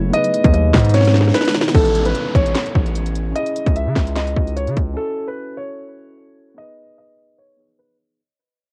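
A dry, tape-worn home cassette sound frames this menacing, melancholic trap excerpt at 149 BPM in a half-time 4/4 feel in G# phrygian, where a dark, mellow grand piano carries the melody up front over a slightly out-of-tune tine electric piano and a glassy, ethereal FM pad with chorus, phaser and reverb that drops out at 1.7 seconds. A heavy, saturated 808-style bass and a produced trap kit of hard-clipped kick, sharp snare, crisp hats and handclaps hit hard up front until about 5.0 seconds, with a drum fill leading into the second section. From there an electronic downlifter, a filter sweep and a fade-out carry the piano and electric piano through an Aadd9, C#madd9, F#m7 progression back to G#m.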